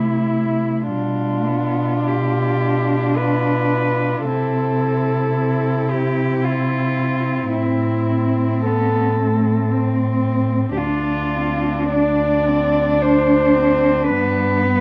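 Tender and serene, this lyrical classical passage for four con sordino cellos, each a single bowed player, sways in a rubato triple metre: the veiled melody sings up front with light vibrato over a hushed second line set back in the mix, a smooth-topped accompaniment and a nasal, soft-attacked bass, while light reverb and a dark production frame harmonies that move from C through Am and Dm7 to settle on G at 14.1 seconds.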